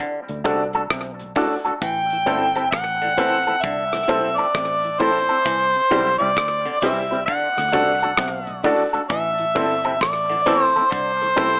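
Roots reggae at a slow 66 BPM in A dorian, this hypnotic, meditative passage cut from a longer piece moves through a D, Am, C, D and Am progression with a 16th-note swing. A damped 70s drum kit of hi-hat, kick drum and rim click sounds dry, with a tight kick, a rolled-off top and a touch of slapback echo. A dark, foam-muted fingered electric bass sits low and round beneath a woody, slightly detuned upright piano playing short, clear stabs with tube saturation. In the background, a stringy, twangy clav runs arpeggios through a phaser, while a mellow tonewheel organ with key click and slow rotary speaker supplies accompaniment alongside a compressed, clean guitar pushed through an envelope filter with spring reverb and tape echo. From 1.8 s a close-miked harmonica takes the melody up front, with light vibrato and scooped notes, its tape echo trailing behind. The whole mix sits in a small room and carries an AM radio sound.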